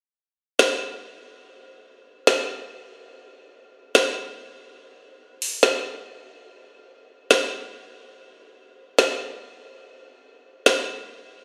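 Hip hop in free time with an ethereal, melancholic mood, this short excerpt features an up-front electronic trap drum kit of woody snare and metallic hi-hats playing from 0.6 to 10.8 seconds, heard as if captured on a phone in the room and bathed in a huge, ambient reverb.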